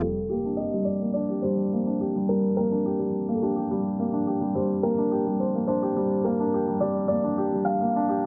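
Intimate and moving, this short electronica fragment pairs a soft, thick-felt muted upright piano carrying the melody with a woody, up-front upright piano playing a riff beneath it, set in light reverb and rounded off by a low-pass filter.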